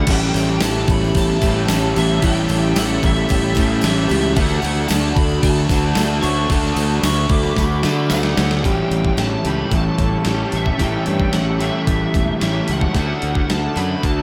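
A dreamy, reverb-soaked mix with a huge ambient wash frames this blissful shoegaze and dream pop rock cut at 112 BPM, where a thumpy, tape-hued 80s drum machine with a gated snare sits up front beside a growly fuzz bass, and a drum fill from 7.6 to 8.6 seconds leads into the second section. Riffs come from a hollow-bodied overdriven semi-hollow guitar bathed in lush chorus and a slightly broken-up, compressed electric guitar with reverse reverb in the background, while a very quiet, shimmering octave-doubled twelve-string acoustic picks arpeggios with audible finger squeak. Above them a warm overdriven lead guitar with chorus and delay carries the melody over a swirling, detuned sawtooth pad and a faint jingly tambourine that drops out at 8.6 seconds, all moving between A7 and Dmaj7.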